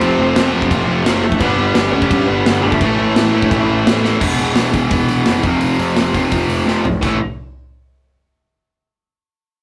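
A rowdy, energetic punk rock fragment at 171 BPM opens with everything at once: a dark, lo-fi lead guitar through a small cranked amp carries the melody until 3.8 seconds, over a bright, up-front tight distorted guitar riff, a compressed distorted guitar riff set in the background, growly fuzz bass and a big rock drum kit with a boomy kick and medium-tuned snare. Chords move F, G, A, E, F, with drum fills at 4.0 seconds and again just before the closing A5 at 7.0 seconds. The rough rehearsal-room recording carries warm saturation and a moderate small-room reverb.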